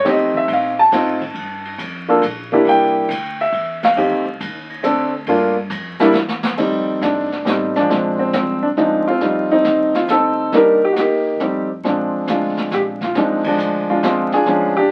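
Vinyl crackle and the character of a very old 78 rpm record, in a modest club-sized reverb, frame this relaxed jazz piano trio excerpt in a swung 3/4 at 137 BPM in F mixolydian, where an up-front, woody upright piano carries the melody with a solo opening, a pizzicato upright bass sits far back in the mix, and a brushed kit with dark cymbals and a boomy kick adds a fill at 6.2 seconds before the second section, with the whole band landing an accent at 13.4 seconds.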